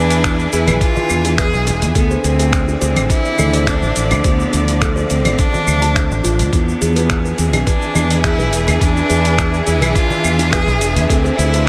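Meditative and mystical, this organic downtempo excerpt in E phrygian dominant at 105 BPM sets a clear, vibrato-rich cello melody with tape echo over lush, distant symphonic strings pumping against the sidechain, woody kalimba arpeggios ringing through delay, an up-front fretless bass with analog chorus, a gritty, dusty sampler-style kit of claves, finger snaps, hi-hat and shaker, a very quiet clay-shelled darbuka, and a thumpy electronic kick, all soaked in a dreamy, huge ambient reverb as a glassy harmonics texture drifts in at 7.1 seconds while the chords move between E7 and Dm7.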